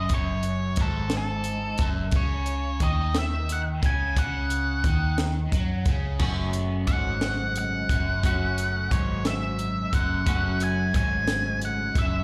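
In a straight 6/8 lilt, this bittersweet, restless indie rock excerpt sounds like a live club gig heard through the venue's PA, with a dry, compact cocktail kit up front (punchy kick, high-tuned snare, dark cymbals) beneath a round, foam-muted fingered bass. An octave-fuzz lead guitar, also up front, carries the melody with distortion and digital delay, while a biting overdriven guitar plays a low picked riff through phaser and slapback echo. At 6.2 s a bright, twangy twelve-string electric joins with its own clean, compressed riff, dressed in lush chorus, slapback and delay.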